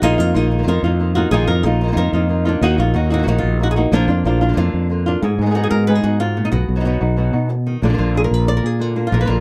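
Passionate and fiery, this brief flamenco passage at 184 BPM in Bb phrygian dominant sets an up-front fingerpicked acoustic guitar melody over a second fingerpicked guitar's stabs, flecked with finger squeak, while a growly, punchy fretless electric bass sits close and direct beneath them, all captured by detailed, dry microphones as the chords move from Bbsus4 through Ebm and Abm before settling back on Bb.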